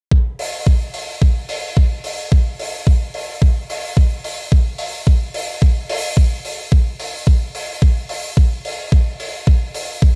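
Sunny and feel-good, this nu-disco excerpt at 109 BPM in a straight 4/4 pairs an up-front, thumpy sampler-style electronic kick with a tape-warm tint and large-room re-recording against a dry, dark, smooth acoustic hi-hat with a rolled-off top. The kick runs from about 0.1 to 10 seconds, with the hi-hat joining at 0.4 seconds and stopping just before the end, all in a reverb-light mix.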